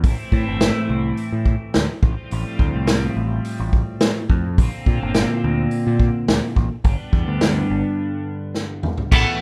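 A straight 4/4 pulse at 106 BPM drives this upbeat, jangly indie rock excerpt in A4 = 442 Hz tuning, where a bright, twangy, double-tracked twelve-string electric guitar riff rings clean and up front over a growling, overdriven picked bass and a roomy acoustic drum kit played with bundle sticks, its punchy kick and dark cymbals leading into a break at 8.0 seconds and a drum fill at 8.6 seconds, as the chords move from Am through Fadd9/A and Bbadd9 to G in a dry, rough home-demo mix.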